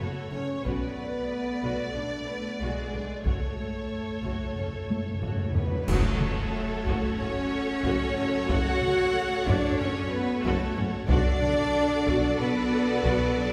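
Bathed in reverberant concert-hall space, this epic, relentless cinematic orchestral cue in F# minor at 92 BPM sets a lush violin section on the melody over a second violin line, with violas in the background, mellow French horns holding chords, and intense cellos and smooth double basses carrying the bass, while hard-stick taiko drive from 0.7 seconds and a round timpani fill, bright cymbals and concert bass drum lead into a band accent at 5.9 seconds, where a focused string section and a soft-attack tuba join for the rest of the excerpt.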